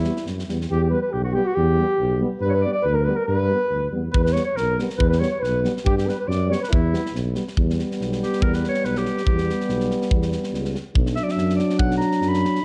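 Virtuosic and bittersweet, this excerpt of Balkan brass band folk moves at 141 BPM in a swung 2/4 and gradually speeds up, with a dark flugelhorn carrying the melody over a bright clarinet second line while a soft-attacked euphonium and French horn sit in the background and a mellow, up-front tuba holds the bass. A tight acoustic drum kit with a high-tuned snare and rolled-off top plays briefly at the start, drops out, then returns at 4.1 seconds. The flugelhorn stops at 7.1 seconds, and from 7.6 seconds the clarinet takes a solo over Em harmony, which turns to Bm near the end, all in a dark production with moderate hall reverb.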